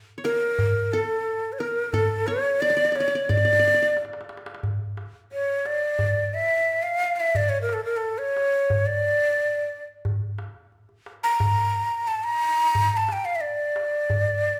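At 0.2 seconds a breathy, close-miked ney enters with an expressive, vibrato-laden melody in D maqam nahawand, together with a bright-edged, plectrum-plucked qanun on a second line and a deep clay-shell darbuka played with soft hands. The ensemble moves at a hypnotic, longing 89 BPM in straight 4/4, tuned to A4 = 441 Hz. After a darbuka fill at 4.0 seconds the qanun drops out at 4.8 seconds, leaving the up-front ney and drum in a moderate recital hall reverb for the rest of this fragment cut from a longer piece.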